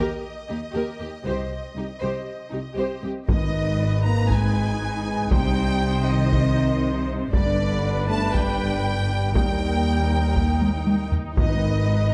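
Set in a moderate concert hall reverb, this clip from a longer cinematic score has a full, epic orchestral sound and a relentless mood in a steady, straight 4/4. Bowed string sections carry the opening build-up: lush violins sing the melody with smooth vibrato while a second, more focused violin line moves beneath them, and expressive violas add accompaniment touched with portamento. Rich, close cellos anchor the bass, joined at 1.3 seconds by double basses that sit deeper in the background. At 3.3 seconds the music swells into its main section as a mellow French horn section lays down sustained chords, solo taiko drums struck with hard sticks drive the pulse from a small-room space, and a very quiet, dry timpani with hard mallets adds articulate accents. A taiko fill at 10.6 seconds pushes toward the close, where the timpani returns as the harmony settles back onto G# minor.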